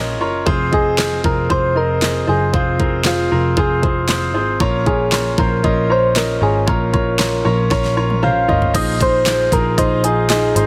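A straight 4/4 pulse at 116 BPM drives this dramatic, earnest piano-driven pop piece, cut from a longer work, with an up-front electronic drum kit entering at 0.5 seconds: knocking kick, fat snare, crisp hi-hat, handclaps, toms and crash cymbal, plus a drum fill from 7.7 to 8.7 seconds before the harmony moves from Fm and Bbm to Fm7. A brilliant grand piano carries the accompaniment beside a dark, round, foam-muted picked electric bass, while a gentle FM synth lead with a keys-like fast attack that decays, chorus and vibrato sings the melody. Light reverb surrounds a heavily compressed, radio-style mix.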